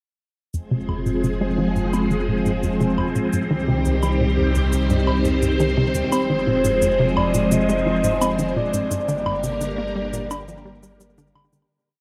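A light machine pulse of overdriven cabasa and low woodblock, echoed by delay and fading in, sets a straight 86 BPM 4/4 beat for this cosmic, mysterious piece of ambient, sequencer-driven space music in F dorian, tuned to A4 = 444 Hz. A hollow, bouncy, detuned square pluck repeats a 12-step sequence that drifts against the bar under a filter sweep, while a swirling, warbling phased string machine holds bright, up-front chords through Fm, Cm, Fm and Gm over a deep sine sub bass. At 6.1 s a soft octave-layered lead with chorus and vibrato sings a dark, free melody, and the short piece sits in a huge, wet reverb before fading out from 8.0 s.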